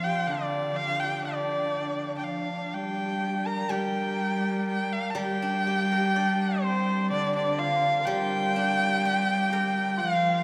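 Bathed in a long, wet cathedral reverb, this graceful and tender rubato fragment of Chinese traditional chamber music features an up-front, nasal erhu singing the melody with vibrato and portamento, joined by a shimmering hammered dulcimer and an intimate, soft-attack cello played sul tasto, while a silvery steel-string zither, plucked with fingerpicks, enters quietly in the background at 3.7 seconds.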